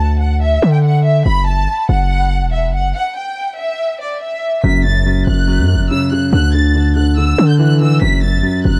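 Dark and cold, this half-time drill excerpt moves at 142 BPM in F# phrygian, with a lush, distant bowed violin section carrying the expressive vibrato melody through a delay over a punchy, heavy 808-style bass that sits up front with a fast attack, decaying tail and a noise layer. After a stop from 2.9 to 4.6 seconds, a warm concert grand piano with deep bass joins up front as accompaniment, moving between F#m and Dsus2. The production is dark and set in a small room ambience.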